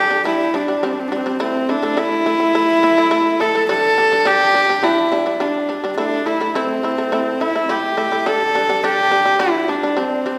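A husky, earthy horsehead fiddle carries the melody up front, bowed by a single player with light vibrato and portamento, over a buzzing, percussive plucked shamisen playing arpeggios in this short cut from a longer Mongolian traditional piece. Set in the G zhi mode at 105 BPM in a straight 4/4, the music feels vast and galloping as the harmony shifts between G5 and A5. A recital-hall reverb with a 1.7-second tail surrounds both instruments.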